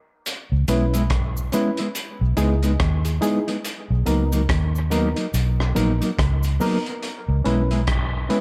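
A crunchy breakbeat kit opens this hypnotic, heavy dub reggae excerpt at 0.3 seconds, its hi-hat, punchy kick and rim click sounding saturated and gritty with a dark, rolled-off top, while a close, dry cabasa sits in the background until 6.8 seconds. A vintage fingered bass follows almost at once, foam-muted, round and amped, pushed up front as the heaviest voice in the mix. From 0.7 seconds a mellow, clean electric guitar adds fingered accompaniment with tremolo and dub echo, joined by reedy electric piano stabs that shimmer with fast tremolo through built-in speakers and trail off into echo of their own. The harmony moves from C#m7 through Emaj7 and Bmaj7 before returning to C#m7 at 7.0 seconds, where one part drops away for the final stretch. Light reverb and studio ambience give the swung, sixteenth-note groove its room feel.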